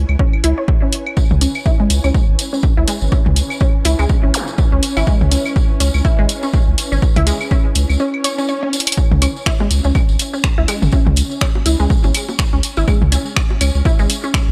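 A dry, gritty hardware recording carries this quirky, clinical minimal techno cut from a longer piece, set in C# minor at 123 BPM with a swung 4/4 groove. A punchy, tape-warm kick and an analog drum machine of finger snaps and hi-hat sit up front with a saturated, thick sub bass. Around them are tape-echoed electronic claves, toms and bongos, a jingly close tambourine, and a juicy, squelchy blip pluck riff through phaser and analog delay. An ethereal pad fades in over C#m7, an electronic zap flickers at 4.3 seconds, and a break arrives at 8.0 seconds, where a swarming, detuned drone lingers in the background and an electronic swell leads to the drop at 9.0 seconds on C#5.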